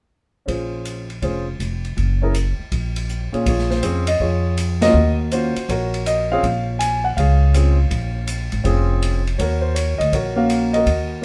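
A concert grand piano carries the melody in this moody, late-night jazz piano trio excerpt, its natural tone reaching down into deep bass and sitting up front from 0.5 seconds. Beside it, a pizzicato upright bass with steel strings sounds woody and growly, standing just as close in the mix. An open acoustic drum kit brings an airy, polished small-room feel, with dark ride and hi-hat cymbals, a medium-tuned snare and a boomy kick, placed further back than the other two. The tune swings in 4/4 at a brisk 162 BPM in Bb minor, moving from Bbm9 and Gb into a new section at 3.5 seconds that alternates Bbm7 and Ebm7. The whole trio hits a shared accent at 4.8 seconds. A moderate studio reverb gives the players a sense of space.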